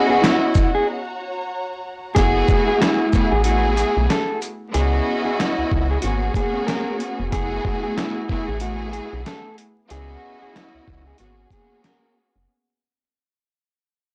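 Boom-bap hip-hop with a reflective, dark mood and a swung feel, taken from a longer piece. A lush, bowed symphonic string section sits up front throughout with expressive vibrato and a soft attack, carrying a cassette-tape character. In the opening break, a smooth, even studio string ensemble holds sustained chords with it until 2.2 seconds. At that point the woody FM bass enters, round and up front with tube saturation, and the passage begins to fade out. A gritty, compressed sampler-style drum kit with a thumpy kick, medium-tuned snare, hi-hat and shaker drives the groove with overdrive, while a clean, fingered electric guitar plays a dark, mellow melody through slapback echo. The mix has a blown-out, overdriven sound with vinyl crackle and moderate studio reverb over chords that circle through minor eleventh voicings.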